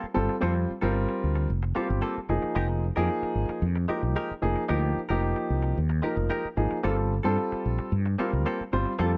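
A dry, close recording in a small room gives this short jazz piece the intimate feel of a 1970s studio session. At 112 BPM in straight 4/4 and G minor, the mood is intense and nocturnal, moving from Gm11 to Fm11 at 2.3 seconds and back to Gm11 at 6.9 seconds. A round, punchy fretless electric bass sits up front, dark and direct, anchoring the low end across the full 9.2 seconds. A concert grand piano with deep bass provides warm accompaniment, also placed close. Alongside them, a bright, twangy clean electric guitar, recorded direct and compressed, plays picked stabs coated in lush chorus.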